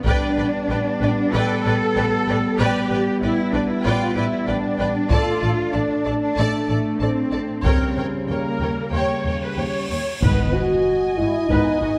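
Dark, epic cinematic orchestral film score in which lush, up-front cellos and bowed double basses anchor distant French horn chords beneath expressive violas with portamento and two warm violin lines, the melody sitting in the background, while a taiko ensemble struck with hard sticks returns at 5.1 s, a huge cymbal swell from 9.3 s leads into an impact, and very quiet, mellow trombones join round, soft-mallet timpani at 10.2 s, the strings and brass set in a wet scoring-stage reverb.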